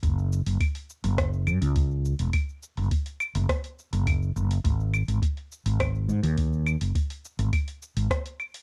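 A mellow fretless electric bass sits up front, its dark, round tone ranging from E1 to G#2 and blending a direct and amped sound as it carries this smooth sunset chillout groove at 104 BPM in a straight 4/4. Beneath it, an electronic kick drum delivers a deep, analog thump with overdrive and a touch of small room reverb. A deep house drum kit adds claves, hi-hat, rim click and shaker in a layered, produced texture, also overdriven and placed in a small room, sitting lower in the mix than the kick and bass. The three parts play together from the start of this short 8.6-second section, cut from a longer piece, and the bass stops at 8.1 seconds. The overall sound is dry, with the character of a home recording on cassette, giving the smooth groove a warm feel.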